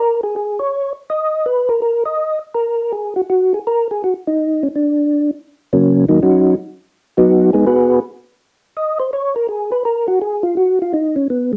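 A moderate studio reverb with a short tail surrounds this brief jazz recording, cut from a longer piece, with a percussive tonewheel organ placed up front as the only voice. The mood is smoky and soulful, moving at a brisk 165 BPM in 4/4 with a swung eighth-note feel, in E-flat minor and tuned slightly sharp at A4 = 441 Hz. The organ's tone is soft, mellow and flute-like, clean, with second-harmonic percussion and a chorus vibrato shimmer, all colored by a slow rotary speaker. Its playing spans Db3 to Eb5. The opening stretch unfolds over open, unaccompanied harmony, and from 5.5 seconds the organ takes its solo over Ebm7, shifting to Abm7 at 6.9 seconds before the harmony opens up again toward the close at 11.6 seconds.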